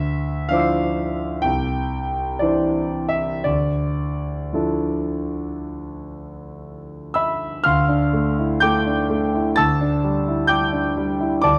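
This impressionist classical piece for solo piano has a hazy, mysterious mood and a slow, rubato feel in common time. A concert grand carries the entire excerpt from 0.0 to 11.6 seconds, spanning C2 to C7, with a clear, open tone, deep bass and an up-front presence. Its harmony drifts through Dm9, Cadd9 and Dmadd9, then returns to Dm9 at 7.7 seconds as the opening passage begins again, resting on Dsus24 at 9.6 seconds. Close, detailed microphones capture the instrument, set in a moderate recital hall reverb with a 1.3-second decay. The piano is tuned slightly low, to A4 = 437 Hz, and the clip is cut from a longer piece.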